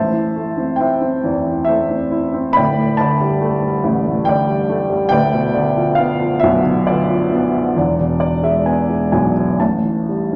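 A slow 3/4 pulse, somewhere between 62 and 72 BPM, moves with a free rubato feel in this brief passage of lyrical classical solo piano in A minor. The mood is dark and melancholic, carried by a warm, woody upright piano that sits up front and ranges from D1 to B5, its notes holding with long sustain. The harmony moves from Am to Dsus4, then to Bdim/D, before settling on E at 7.8 seconds. From there the piano plays a fill that runs to the end at 10.4 seconds, closing on an A7 chord with its third omitted. A recital hall reverb with a 1.5-second tail gives the instrument a wet, spacious sense of room, and the passage is clearly cut from a longer piece.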